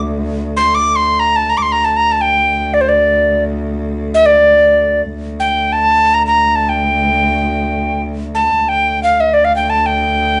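In free time, this short excerpt cut from a longer Arabic maqam piece unfolds in maqam bayati on D, with a melancholic, hypnotic mood. A bowed cello holds a low D drone from the first moment, its sul tasto tone soft in attack with a light vibrato and an airy, intimate quality. At 0.6 s an alto recorder enters with the melody, ranging from C5 to D6 and sitting up front, its straight, woody tone marked by a crisp, chiffy attack. The recorder clearly leads over the much quieter cello, and both parts continue to the end at 10.4 s across two passages built on the same material. A moderate studio reverb places the ensemble a little further back in the room, and the mellow sound carries little high-end sparkle.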